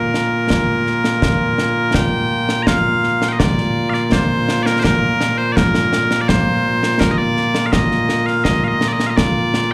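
A steady, straight three-beat lilt carries this ceremonial, proud stretch of Scottish pipe music, cut from a longer piece. Loud, piercing bagpipes sound continuously up front with a slapback echo on the melody, while concert snare and bass drum, close, dry and acoustic, join at 0.1 seconds. The whole performance comes across as a live gig heard through the venue's PA, with a light club reverb around it.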